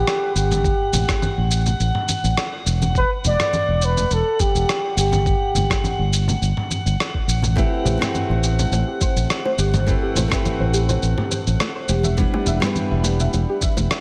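Smooth and warm, this sunset chillout clip opens with a breathy, dark flugelhorn melody with light vibrato and scooped notes, set up front under tape echo, over a fretless electric bass, a glassy texture of drifting overtones, and a gritty, tape-toned sampler-style soul kit of rim click, shaker and toms. A thumpy, compressed electronic kick and ringing congas and bongos sitting in the background fill out the groove. The horn stops at 6.1 seconds, and from 7.6 seconds a bright, fingerpicked nylon-string guitar with audible finger squeak enters, soon joined by a soft, round pluck playing arpeggios through analog chorus and tape echo, all in a lightly reverberant room with a faint mains hum.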